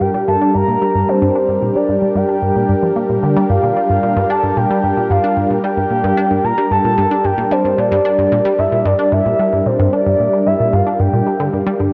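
A steady, straight 4/4 pulse at 112 BPM drives this hypnotic, expansive piece of ambient, sequencer-driven space music in G dorian, resting on a single Gm7 chord throughout the short passage cut from a longer work. Underneath, a tight sequenced synth plays a driving riff from G2 to D4, its detuned sawtooth tone plucked through a filter and colored by chorus, phaser and analog delay. Above it, a sweeping resonant pad holds sustained chords between G3 and Bb4, an airy, evolving sawtooth layer with a noise component, slow attack and long release, brightened with chorus. The soft octave-layered synth lead carries the melody between C5 and Bb5, a round, dark blend of triangle, sawtooth and sine with a sub octave, shimmering with vibrato, tremolo, chorus and analog delay. All three parts sit up front. The riff and pad play for the full 11.9 seconds, while the lead stops just short at 11.8 seconds, all bathed in a wet plate reverb and a worn, warbling cassette-tape character whose pitch drift lends the sound an aged, drifting quality.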